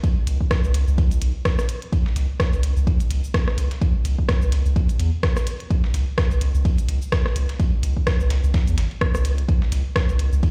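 Quirky and clinical, this short stretch of minimal techno, lifted from a longer piece, rides a swung 16th-note grid in 4/4. A deep electronic kick sits up front from the first moment, joined at 0.3 seconds by a round analog bass that moves between G#1 and E2 with a dark, nasal, sine-like tone, a fast attack and long sustain, pumping through sidechain compression. Entering at the same point, a minimal click kit adds cabasa, rim clicks and clicky hi-hats with a produced edge. Further back, a gritty, compressed sampler-style kit contributes a medium-tuned snare and a ride cymbal, both thinned by high-pass filtering, with the cymbals also pumping. The whole mix sounds as if played on a big sound system in a bare room, with stone reverb and a faint mains hum lending it a cold, cavernous air.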